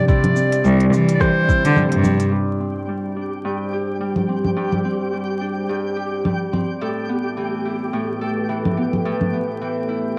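Delicate and hopeful, this short folktronica excerpt at 107 BPM with a gentle 16th-note swing opens on a Cadd9 chord as a soft-attack clarinet sings a brief classical-style melody over fingerpicked, ringing Celtic harp arpeggios, a dark, detuned, warbling pad in the background, a soft kick and an organic electronic kit of congas, crisp hats, rim click and shaker, with a focused, boxy bowed cello adding vibrato bass from 0.7 s, before a sparkling granular shimmer enters at 2.7 s as the harmony moves through Gsus4 to Asus2, all wrapped in the lo-fi character of a cassette home recording, light reverb and vinyl crackle.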